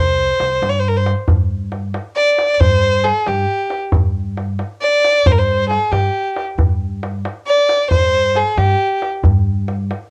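Captured at home on cassette with light reverb and small-room ambience, this passionate cut from a longer Persian modal ensemble piece moves in a straight 6/8 at 90 BPM, led by a single up-front violin whose clear, focused, close bowed tone carries vibrato and a tape-tinged color between G4 and D5 until 9.1 s, over a woody, dark pizzicato upright bass on steel strings, also up front, and a tight tombak played with soft hands that enters at 0.2 s.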